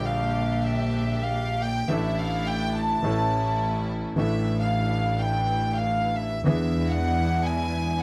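Passionate and melancholic, this short tango passage moves at 106 BPM in 4/4 with a rubato feel, the chamber violin section carrying a biting, up-front second line that is featured as a solo across the full 8.0 seconds. A clear concert grand piano with deep bass provides the accompaniment, a studio string section adds earthy bowed stabs with light vibrato, and a single bowed double bass with a nasal, gut-string, reedy tone anchors the low end. The harmony passes from Gm/Bb through Asus4 and A to E7, all set in a moderate club reverb, and the clip is cut from a longer piece.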